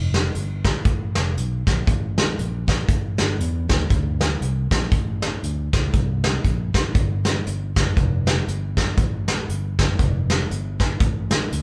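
Jubilant and uplifting, this short uptempo gospel excerpt moves at 118 BPM in 4/4 with a swung eighth-note feel in F major. A fingered electric bass sounds warm, punchy and direct in the low register, joined at 0.1 seconds by a soft brush drum kit whose punchy kick, medium-tuned snare and hi-hat sit up front with a natural acoustic tone. The two play together in one room under light reverb, giving the 11.6-second passage a live, close-knit sound.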